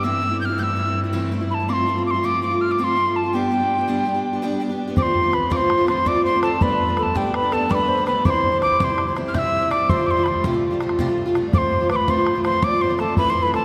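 Set in the long, wet reverb of a church or concert hall, this lively, bright Celtic slip jig moves at 110 beats per minute in a straight 9/8. A breathy, mellow mid whistle carries the melody up front throughout, its tongued notes marked by a soft chiff, gentle vibrato and rolled-off highs, while a picked steel-string parlour guitar gives warm, boxy accompaniment across its low and middle range. At the start, a dark, veiled cello, muted and bowed by a single player, holds a low G drone with vibrato and portamento beneath them. At 5.0 seconds the cello falls away and a wooden flute enters with a pure, crisp-edged second line, joined by a damped, tight bodhran that sits close and dry against the cavernous room. The harmony moves from A minor through F and G into a brighter passage of C and added-ninth colours, and the music is cut from a longer piece.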